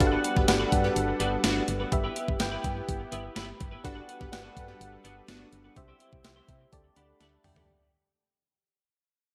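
A bright, glossy 1980s-style digital production with plate reverb frames this nostalgic pop fragment, fading out across its length as a warbling, mellow FM electric piano with tremolo carries the accompaniment up front and adds a fill at 3.1 s, over a clean drum machine with a thumpy kick and gated reverb, a punchy, round FM bass, a twangy chorused twelve-string guitar riff with digital delay, a funky sawtooth polysynth comp that stabs in the background until 5.5 s, and a smooth, detuned analog pad holding sustained chords, before a drum fill at 7.2 s.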